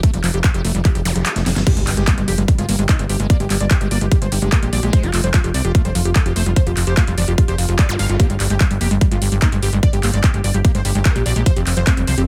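Hypnotic and alien, this psychedelic trance passage opens with a filter sweep on a squelchy, resonant acid line, distorted and chorused with delay and sidechain pumping, sitting in the background over a punchy, overdriven kick, a big-room dance kit with a huge snare and metallic hats, and a plucky, funky analog bass up front. The kick drops out and a drum fill leads into the drop at 1.7 seconds, where a thick, detuned unison lead with vibrato, phaser and tape echo takes the melody. Alongside it sit a very quiet, nasal vowel-sweep wobble bass and faint electronic zaps and impacts, all bathed in digital ambience.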